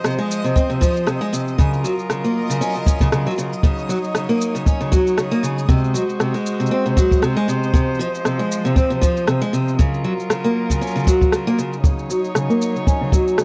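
A lightly swung 117 BPM groove in 4/4 opens this autumnal, intimate folktronica excerpt, with an electronic rim click and shaker ticking throughout and a boomy, natural acoustic kick, played with brushes and sitting up front, arriving at 0.6 seconds. A bright, parlour-sized steel-string acoustic guitar carries picked arpeggios in the foreground, its fresh strings softened by a low-pass filter and trailed by tape echo. Beneath it, a muted string quartet, one player per line, holds veiled, con sordino chords with vibrato and a close chamber feel. High in the background, a reversed, granular texture swells dreamily with a detuned, soft-attack tone and its own built-in reverb until 11.9 seconds. The harmony in Eb dorian cycles through Cmadd11, Gbmaj7, Ebm7 and Ab7, with the mix captured as a dry, close 1970s-style studio recording under light reverb.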